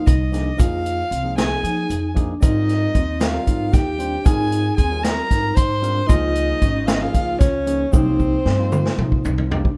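Set in a straight 7/8 at 229 BPM in eighths, this brooding, intricate progressive instrumental in C minor, cut from a longer piece, carries a dark, woody bowed violin melody over gritty overdriven tine electric piano, ringing metallic vibraphone arpeggios, thumpy pizzicato upright bass on gut strings, a boomy, roomy big-band drum kit that plays a fill from 7.9 seconds, and a faint grainy egg shaker, while from 1.4 seconds a soft-attack alto saxophone with delay adds a second line, all captured in a dry, rough home demo mix.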